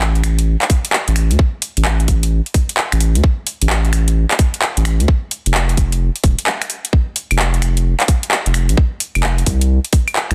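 UK garage in the two-step style, this short cut from a longer piece has a late-night, skippy mood, with a 65% swing on the sixteenths giving it a lilting bounce. A saturated sub bass runs throughout, deep and thick with a sine-like core, a fast attack and sustained notes sitting up front between D#1 and D2. The garage drum kit plays across the whole passage, its claves, finger snaps, handclaps and metallic hi-hats layered and produced with a touch of studio reverb. An electronic kick drum enters at 0.7 seconds, tight and up front, also carrying a little studio reverb. The overall sound is dense and heavily limited in a modern way, with little room ambience.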